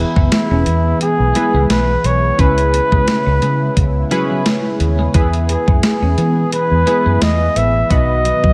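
Nostalgic and glossy, this short cut from a 1980s-style pop piece puts a mellow flugelhorn up front, singing the melody with vibrato and scooped notes over chords moving from E to C#m7 and back, landing on B at 7.9 seconds. Chorused retro synth keys built from detuned pulse and sawtooth waves add bright, decaying accompaniment, while a slow-attack pad with a sub octave and chorus holds evolving sustained chords in the background. A round, punchy muted fingered bass sits forward from the start, joined at 0.2 seconds by a thumpy 12-bit drum machine with gated reverb on kick, snare and hi-hat, all with a gentle swing, and a very quiet, twangy twelve-string electric guitar picks out a compressed riff beneath it all in light reverb.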